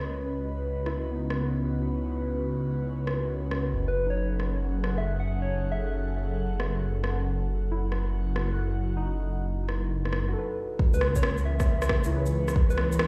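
Swung 16ths at 136 BPM in 4/4 carry this wistful, melancholic future garage piece in C# minor, where overdriven electronic rim click and shaker arrive at 0.9 s over a menacing, detuned saw bass, an airy, breathy pad treated with phaser, and muted, felt-like synth keys under a filter sweep and tape echo, all three pumping to the sidechain across C#m7 and F#m7 chords, while a round, warbling FM lead with vintage 12-bit grit drifts in at 3.9 s, and after a brief break a deep, overdriven kick lands up front at 10.8 s, the whole mix ringing in a large, reverberant room.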